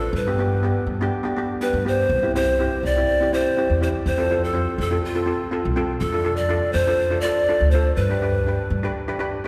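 A bouncy, carefree calypso at 123 BPM in a straight 4/4 opens at once with breathy, bright cane pan pipes carrying the melody between F4 and D5, their crisp attack and chiff set up front. Beneath them a double seconds steel pan, struck with hard rubber sticks, supplies shimmering, metallic accompaniment from B3 to C5, while a pizzicato upright bass on steel strings gives a woody, dark foundation in the low register from C2 to G2. The harmony moves from G to C, then F and Dm/F, before returning to G at 8.0 seconds. Everything sits in a wet cathedral reverb with a long 4.8-second decay, giving the church or concert hall setting a spacious glow around the close, up-front parts. The pan pipes and bass stop at 8.9 seconds, leaving the steel pan to ring on alone until 9.5 seconds in this short fragment of a longer piece.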